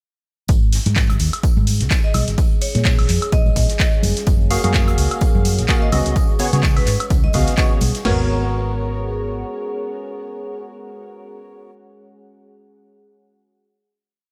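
This soulful, bittersweet piano house piece opens at 0.5 seconds with a punchy analog drum machine driving a four-on-the-floor kick, snare, toms and crash, joined by a second drum machine layer of handclaps, hi-hats and woodblock, a very quiet close tambourine and conga part, and a faint soft-mallet acoustic kit playing a looped, edited breakbeat with a fat snare in the background. Underneath, a dark, round hollow-body electric bass plays a funky syncopated line with sidechain pumping, running at 127 BPM in G# dorian with a swung sixteenth feel. A deep, moody pad with slow attack and chorus rises from 1.7 seconds, carrying slowly shifting chords from G#7 through A#m7, F#maj9 and C#7sus4, while a bright, ringing vibraphone with medium hard mallets adds short answering phrases in the background, trailed by a diffuse delay. At 4.5 seconds a hollow, percussive organ stab enters with a mellow, chorused rhythmic chord riff that pumps against the kick. 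The groove gives way at 8.0 seconds to a sustained G#m11 final chord held by the pad and organ, all set in light reverb.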